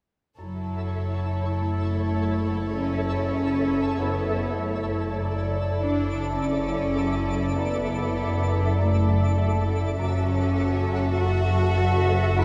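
A hard-mallet marimba riff with a bright, woody bite drives this tense, uneasy suspense film cue in F# minor at 100 BPM, starting at 0.4 s over dark double basses and rich cellos, while warm sul tasto violins carry a floating melody and second line above lush, vibrato-tinged violas, a twinkling granular texture enters at 0.8 s with sparkling sustained chords, and a swarming, warbling detuned drone with phaser joins at 2.6 s, all set in a wet concert hall.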